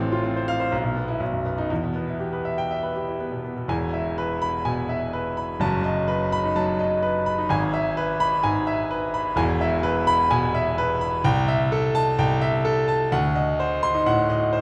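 A clear grand piano opens this short excerpt alone, launching a classical, virtuoso piano study in E minor with a passionate, agitated character. The playing moves at 127 BPM in 4/4 with a free, rubato feel, and the piano sits natural and up front while spanning a broad range from E1 to C6. At 3.7 s the music turns to E major, and the harmony passes through chords such as B7/F#, E/G# and Am7/C before reaching a tense D7b9 at 13.1 s. A scoring stage reverb with a 1.5 second decay surrounds the instrument, and the production leans dark. The passage ends at 14.6 s, cut from a longer piece.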